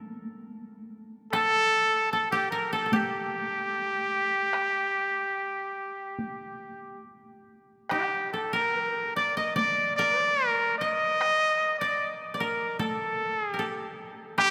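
Still and austere, this rubato excerpt of Japanese traditional chamber music at 74 BPM in G hirajoshi opens with a woody, fingerpicked koto second line alone before a nasal, straight-muted trumpet takes the solo melody up front at 1.3 s with vibrato and scooped notes in a pop style, joined at the same moment by a close taiko ensemble struck with hard sticks, the whole set in a long, cavernous cathedral reverb while the koto itself stays dry.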